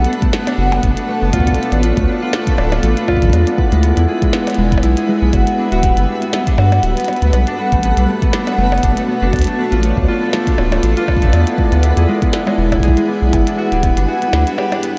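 Cerebral and eerie, this IDM excerpt moves at 120 BPM in 4/4 with a light swing on the sixteenths, cycling through Bm7, Dm, E and Gmaj7. A bright, fingerpicked concert harp plays ringing arpeggios through analog delay up front, beside a round, dark analog bass with tube saturation. A cloudy, detuned granular pad holds slow-attack chords, and a sparkling granular texture shimmers an octave up in the background, while a deep electronic kick and a glitchy kit of tiny snare, clicky hats and percussion blips, both re-recorded in a small room, sit in a dreamy mix soaked in huge ambient reverb, the kick stopping at 13.9 seconds.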